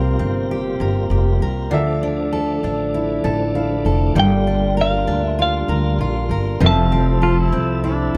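This tender, reflective acoustic pop passage in D minor opens at a relaxed 98 BPM with a lightly swung 16th feel: fingerpicked, full-bodied steel-string acoustic guitar and a woody, pizzicato upright bass sit up front, while a clear upright piano accompanies in the background and a tonewheel organ with key click, chorus vibrato and fast rotary speaker holds sustained chords over C7sus4, Dmadd9, Gm7 and Fmaj7. The piano adds a fill at 2.9 seconds, and at 4.2 seconds a bright, twangy, compressed twelve-string electric guitar picks out the melody high in its range. At 7.2 seconds a clean pedal steel guitar, played with fingerpicks and slide, joins with a second line of volume swells, all set in light reverb in this cut from a longer piece.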